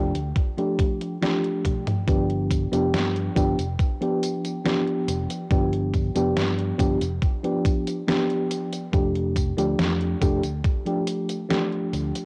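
A mellow FM electric piano, round and warbling with tremolo, subtle chorus and tape echo, opens this faded, nostalgic vaporwave fragment over a punchy, tube-saturated fingered electric bass, moving from F69 to G7 and back. A detuned 8-bit drum machine enters at 0.2 s, its overdriven, cassette-worn hi-hat, snare, tambourine and toms breaking into a fill at 1.6 s, while a thumpy, overdriven electronic kick sits up front, all wrapped in light reverb and digital ambience on a home cassette recording.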